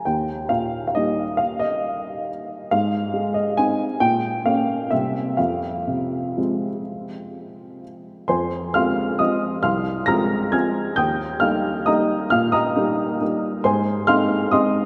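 This classical piano waltz, cut from a longer piece, carries a bittersweet, nostalgic mood in F minor, moving in 3/4 with a rubato feel that drifts between 119 and 145 BPM. A solo upright piano plays throughout the 14.9 seconds, its woody, slightly detuned tone sitting present and up front, with short sustain, and ranging from C2 up to Bb6. The harmony passes from Eb to Ab, then through Gdim/Bb and C7 before settling on Fm around 5.4 seconds. The opening phrase repeats from 8.3 seconds, returning to Eb and then Ab. A wet cathedral reverb with a 5.5-second decay places the instrument in a vast, echoing space, and the tuning sits at A4 = 438 Hz.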